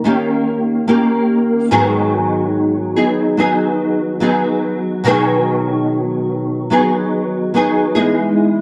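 A dark, warm production sets a lone fingerpicked nylon-string guitar up front in a small room. Its woody, warm tone from old strings is given a gentle shimmer by ensemble chorus and vibrato. This short indie pop fragment moves at an unhurried 72 BPM in B major, drifting through D#7, G#m7, B6 and Emaj7 chords with a sunny, nostalgic mood.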